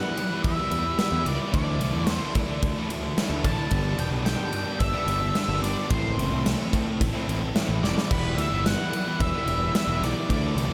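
A straight 4/4 pulse drives this cathartic, dark stretch of quiet-loud alternative rock, cut from a longer piece, with a big, up-front acoustic drum kit of punchy kick, bright cymbals and medium-tuned snare sounding in a big room, arriving at 0.2 seconds and throwing in a fill at 7.8 seconds. A round, overdriven picked bass joins at 0.4 seconds beneath two fuzz guitar riffs, one compressed and bright, the other thick and set back, while an octave-fuzz lead guitar carries a dark, distorted melody over chords moving from Em through Dsus2, Gadd9 and Am back to Em. A very quiet, focused studio string section holds bowed, vibrato-tinged chords underneath, all wrapped in light reverb.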